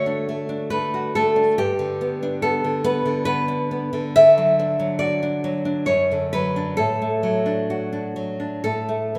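In a rubato 3/4 that drifts between 57 and 72 BPM, this short romantic piece for solo classical guitar unfolds in D major with a nostalgic, tender mood. A single nylon-string guitar carries everything, fingerpicked and placed up front, its fresh strings giving a bright voice across a range from F#2 to E5. The harmony rests on D, moves to G at 1.6 seconds, and returns to D at 4.2 seconds before passing through D/F# and D/A. The guitar sits in a wet hall reverb with a 1.7-second decay that lends the tender playing a spacious, church-like glow. It is a brief cut from a longer piece, closing on an open, unharmonised moment.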